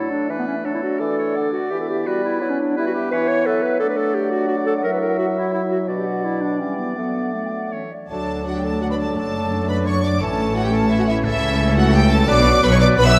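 A quick, flexible triple-time pulse at 172 BPM carries this cheerful, graceful classical-period movement in D major, cut from a longer piece and opening with winds alone: a mellow solo clarinet, a distant oboe and a background flute section with rolled-off highs weave second lines over a roomy bassoon accompaniment and dark, soft-attacked French horn chords. At 8.1 seconds the bowed strings join, with a focused, close violin section taking the melody above a very quiet, expressive second violin line, a lush viola part set back in the mix, and a rich cello section joined by clear double basses in the bass. Moderate concert hall reverb surrounds the ensemble as the harmony moves from D through A toward B minor.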